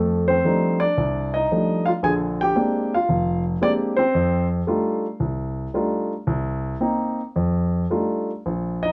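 Solo jazz in F mixolydian at 113 BPM, this short, sophisticated excerpt from a longer piece has a lone grand piano, warm, polished and up front with short sustain, swinging with rubato across a range from F1 to Ab5 through F13, Bb13, back to F13, then Cm7 and F13 once more, set in a small room with moderate reverb.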